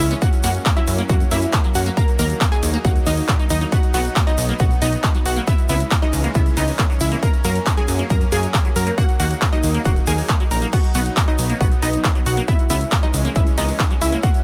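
Set in a digital ambience, this euphoric, soaring uplifting trance passage in B major at 137 BPM, cut from a longer piece, drives forward on a punchy, up-front electronic kick and a big-room dance kit with metallic hats, crash and handclaps, while a funky plucky analog bass, a squelchy liquid acid bass arpeggio with lush chorus and delay, a detuned unison pluck melody echoed by delay, and a bright supersaw pad in the background all pump under sidechain, alongside a grainy tube shaker over a repeating F#, D#m, B, C#m progression.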